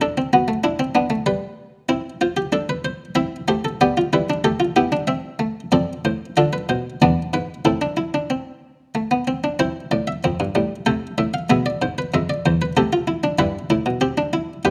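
Baroque-style classical fugue in four parts for solo harpsichord, lively and stately at 95 BPM in a straight 3/4, cut from a longer piece. The buff-stop harpsichord sits up front with a muted, lute-like, plucked French-style tone, captured by close, detailed microphones in light reverb, and ranges from E2 to F5. It opens in C major over dominant-seventh harmony, then turns to A minor at 5.7 seconds, closing on E7, Am/C and Em/G chords by 14.7 seconds.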